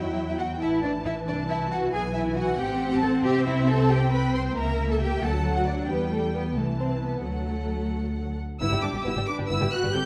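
Heard in a dark production with a moderate scoring-stage reverb, this graceful, spirited passage from a longer classical-period movement for string orchestra moves at a quick 91 BPM in a straight 6/8, settling into G major from 3.2 s. The first violins carry a smooth, even melody high above a close, expressive second violin line full of portamento, while the violas add rich, distant accompaniment with their own sliding vibrato. Cellos give a focused, lush bass, and an up-front double bass section anchors the bottom, with the harmony arriving on G at 8.6 s.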